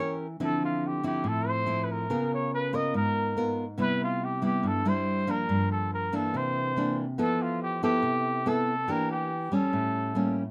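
A straight 4/4 bossa nova groove carries this wistful, melancholic fragment of a longer piece, as an acoustic nylon-string guitar, full-bodied and fingerpicked in a classical manner, lays down rich extended harmony such as Dm9, Fmaj9#11 and a closing A7b9. Over it, a mellow, vintage-toned trumpet plays a soft-attacked solo melody in a jazz style, scooping into its notes. Both instruments sit up front in a light reverb.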